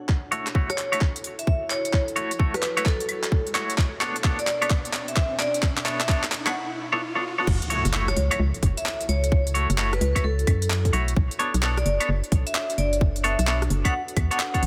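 A clean, twangy electric guitar sits up front with bright, compressed stabs treated with tremolo, delay and a low-pass filter, over a bouncy, moody two-step UK garage groove at 130 BPM with a swung sixteenth feel. Beneath it, a tight, tape-warm electronic kick and a layered garage kit of crisp hi-hats, handclaps, claves, rim clicks and crash cymbal move through a drum fill during the build-up, while an ethereal, airy pad holds sustained F#m7 and Bm9 chords in the background with ensemble chorus, built-in reverb and sidechain pumping. A vibraphone played with hard mallets carries a metallic, ringing melody with fast motor vibrato and delay from 0.7 seconds. A background riser climbs toward a brief break before the drop at 7.5 seconds, where an impact hits and a hollow, organ-like FM bass enters up front with dark, percussive, decaying notes. Light digital ambience surrounds this excerpt, which is cut from a longer piece.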